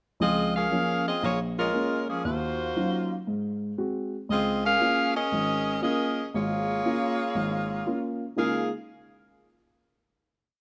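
A joyful, energetic swing jazz piece opens with a saxophone section and grand piano entering together, the saxophones carrying a motif-based, song-like melody in tight four-part block harmony with a soft attack, vibrato and a smooth top. Beneath them, a dark, mellow piano plays a stride bass with close voicings and short sustain, moving from Db6 through Bbm7, Ebm9 and Ab7 back to Db6. Both parts sit up front in a close, detailed sound with light reverb, and the short piece closes on a final chord from 8.4 seconds.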